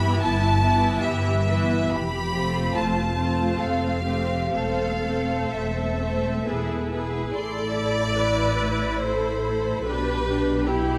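A classical slow romantic movement for string orchestra in A minor, this elegiac, yearning excerpt moves in a rubato 3/4 at roughly 61-76 BPM, with chords passing from Em/G and F through Am/E and E before a new section opens on Am at 7.4 seconds. A vibrato-laden violin section carries the smooth melody high above a second violin line with lighter vibrato, while focused, lush violas fill the accompaniment and a cello section sits in the background. Up front, a double bass section with soft attacks and expressive bowing anchors the bass line, all bathed in a moderate concert hall reverb.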